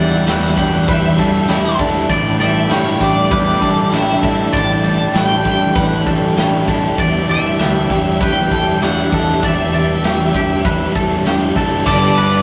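A rough rehearsal-room recording, bathed in a wet studio reverb, opens this dreamy, blissful piece of shoegaze and dream pop rock, taken from a longer piece and tuned to A4 = 437 Hz. It moves at 98 BPM in a straight 4/4, with a big acoustic drum kit arriving at 0.3 s: punchy kick, medium-tuned snare and bright crash and ride cymbals ringing in a big room. Beneath it, in the background, a growling picked bass with overdrive anchors the low end as a thick fuzz guitar and an overdriven semi-hollow guitar with a hollow-body character play low riffs. A clean, compressed, twangy electric guitar plays fingered arpeggios in the middle register, while a dark octave-fuzz lead guitar carries the melody up high. Behind them all, a brassy, bold analog pad built from detuned sawtooth tones holds soft-attack sustained chords with chorus, as the harmony moves from Em7 to A7sus4, back to Em7 and finally to Gadd9.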